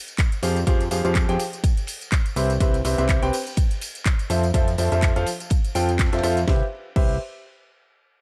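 A punchy electronic kick sits up front at 124 BPM in 4/4, with a light swing on the sixteenths driving this feel-good, joyful piano house excerpt in C major. Around it, a tape-colored house kit adds a cracking snare, metallic hats, handclaps, tambourine and a crash. Further back, a cloth-damped acoustic kit with dark cymbals, a fat snare and a rolled-off top fills in the background. From 0.4 seconds a clear, polished baby grand piano carries the riff with sidechain pumping and analog delay over an Fmadd9, Cmaj7, Fmaj7 progression, while a thick, detuned sawtooth bass with tube saturation and a fast attack holds low, sustained notes that also pump. The drop runs until 6.5 seconds, where the harmony settles on Cmaj7 as a new section begins, all set in a dry, gritty small-room sound.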